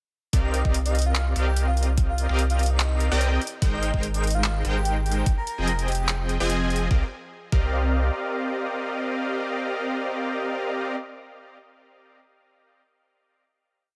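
Future bass at 146 BPM in C minor with a swung, half-time feel, this emotional, lush piece opens on a drop at 0.3 seconds, moving through Cm11, Abmaj7 and Fm7 before settling on a final Cm11 chord from 6.9 seconds. Punchy, detuned supersaw stabs in spread voicing throb in tempo with sidechain pumping and delay, over a deep, saturated sub bass tied to the chord rhythm, an overdriven, knocking electronic kick, and a dubstep kit of bright hi-hats with rolls and handclaps. Above them, an airy, dreamy lead with chorus and vibrato offers short answering phrases, and the supersaw stabs ring on alone until 11.0 seconds in a light reverb.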